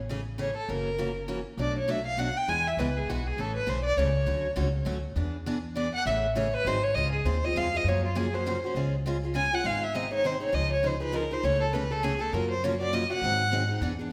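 A lively swing in 3/4 at 201 BPM drives this jazz manouche excerpt, where a woody, thumpy pizzicato upright bass and a bright, boxy picked steel-string guitar with audible finger squeak support an up-front bowed violin solo full of vibrato and portamento, all set in a church-like reverb as the key moves from A major to Db major at 7.0 seconds.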